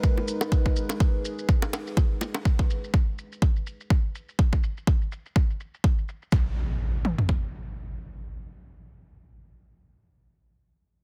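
A driving, hypnotic afro house groove at 124 BPM in G# minor swings its sixteenths on an up-front electronic kit with a deep, overdriven kick and toms, joined by a layered electronic shaker and tight, high-tuned acoustic bongos that sit close and dry. A dark, detuned analog pad holds a G# minor chord with a slow attack under chorus, phaser and sidechain pumping until 2.4 seconds, after which the harmony falls away and the kit carries on to 7.4 seconds. An up-front electronic impact arrives at 6.3 seconds, closing this fragment of a longer piece inside a dense, heavily limited modern master with digital ambience.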